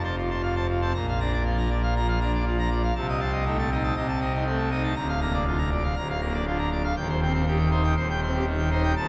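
In a steady, straight four-beat pulse, this brief fragment of a classical organ toccata unfolds majestic and brilliant, with a pipe organ playing solo on full organ, its mixtures and romantic voicing spanning from a deep D1 up to Bb5 and sitting up front in the mix. The harmony moves from F to Bb at 0.9 seconds, then through Adim/C, Bb/D and Cm/Eb. A long cathedral reverb of 4.2 seconds surrounds the sound, while vinyl crackle and a dulled top end give it an aged, dusty patina.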